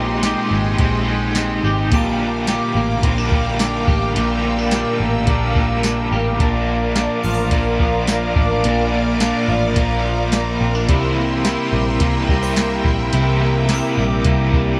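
Blissful and dreamy, this dream pop passage is cut from a longer piece, with a soft vintage rhythm box of deep kick, tonal snare, metallic hats and tambourine under a dark, round, foam-muted picked bass and warbling sawtooth string-machine violas holding evolving ensemble-chorus chords. Up front, a twangy, slightly broken-up electric guitar plays fingered arpeggios through analog chorus and tape echo, while a raw garage guitar adds overdriven accompaniment with tremolo and lush chorus over chords moving from Abmaj7 to Gm7, Bb and C7. A brilliant Italian-style harpsichord sits in the background with tape echo, entering at 1.9 seconds and returning at 7.2 seconds, all set in a moderate echo chamber.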